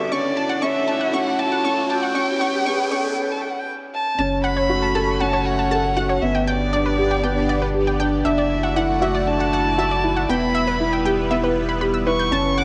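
Up front in the mix, a single bowed violin carries the melody with vibrato and portamento, its tone expressive and slightly boxy, in this tender, hopeful piano-and-strings electronica cut from a longer piece at 118 BPM in 4/4. Beneath it a felt-muted upright piano plays a soft, mellow riff with audible action noise, colored by cassette tape and tape echo, while an analog pluck spins bright, detuned sawtooth arpeggios through chorus and echo from 0.1 seconds. A lush unison pad holds thick, detuned chords with slow attack and long release, treated with chorus, phaser and tape, and a round sine sub bass anchors the low end. An electronic riser drives the build-up until 3.2 seconds, followed by a brief break and a drop at 4.2 seconds, where the harmony moves through F#m, G, Dadd9/F# and Em. A moderate hall reverb and the intimacy of a home cassette recording give the whole an enveloping glow.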